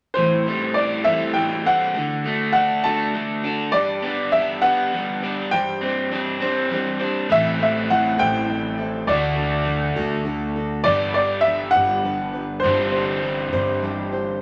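In a straight 6/8 at 67 BPM, this wistful, dusty rock excerpt in A dorian sets a clear, worn grand piano melody up front over picked, full-bodied steel-string acoustic guitar with finger squeak and a bright, double-tracked overdriven electric guitar riff, cycling through Am7, D, G and Csus2/G, before a woody pizzicato upright bass joins at 7.3 seconds, all in a moderate large studio reverb.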